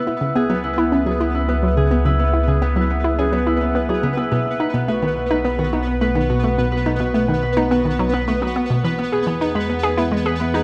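A straight 4/4 pulse at 106 BPM drives this cosmic, hypnotic stretch of sequencer-driven ambient space music in C# minor, moving from C#m7 to B at 4.3 seconds and E at 8.8 seconds. Ringing, fingerpicked Celtic harp arpeggios with tape echo open from the start alongside a tempo-synced, detuned triangle texture that pulses softly through chorus and its own reverb, and at 0.1 seconds a hollow, bouncy square-wave pluck riff with chorus, phaser and tape echo enters and sits loudest. From 0.6 seconds an evolving sawtooth analog drone with pulse-width modulation and chorus holds the bass up front, and the whole excerpt sits in a moderate plate reverb.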